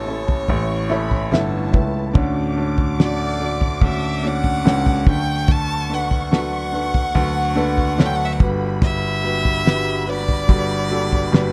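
A dark, warm studio sound frames this hopeful, emotional pop ballad in D major at 72 BPM, where a clear, smooth solo violin sings the melody alongside a lush violin section in the background, a soft felt-muted upright piano with audible action noise, very quiet fingerpicked steel-string acoustic guitar arpeggios, a present baby grand piano carrying the bass with long sustain, and an up-front damped 70s drum kit with a fat snare and tight kick entering at 0.3 seconds, moving through A, Dmaj7, Bm7/D and Gmaj7 in this excerpt from a longer piece.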